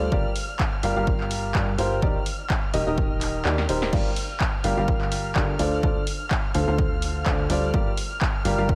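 A clear, woody upright piano riff sits up front in this energetic, bittersweet piano house excerpt at 126 BPM in G minor, its slightly detuned tone carrying delay and sidechain pumping over chords of Gm7, Ebmaj7 and Dm7. A funky, wave-folded analog bass with a plucky filter attack pumps beneath it, while a veiled, con sordino string section holds dark sustained chords in the background. An electronic kick and a punchy analog drum machine with crash cymbal, handclaps, hi-hat and snare drive the swung groove, both re-recorded in a large room, and the kick drops out from 3.5 to 3.9 seconds for a drum fill.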